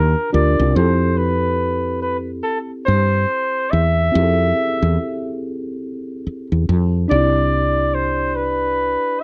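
A gently swung 16th-note groove in 4/4 carries this soulful neo-soul R&B excerpt, where a clear, vintage flugelhorn plays a jazz-style solo up front with scooped notes and a slapback echo over a mellow, worn and slightly out-of-tune tine electric piano and a round, woody fretless electric bass, all captured dry and close in a 1970s-style studio as the harmony moves from Ebmaj9 to Fmaj9 and settles on Cmaj9 at 7.1 seconds.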